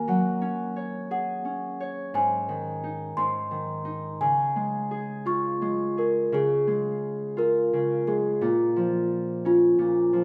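A large celesta carries the melody, its bell-like, delicate tone struck with medium felt hammers and sounding sweet and full from the opening second to the close at 10.2 seconds. This is a sleepy, tender children's lullaby in Db major, cut from a longer piece and moving in a slow, rubato 6/8 at about 58 dotted-quarter beats per minute. Beneath the celesta, a Celtic harp plays a fingerpicked accompaniment throughout, its bright acoustic strings ringing and placed up front in the mix. The harmony drifts from Gbsus2 to Ab5 and settles on Db before turning to Bbm near 8.4 seconds, while the short melodic phrase is heard twice. The two players sound as if performing live together in one large studio, bathed in a generous, wet reverb that lends the lullaby a soft, dreamy glow.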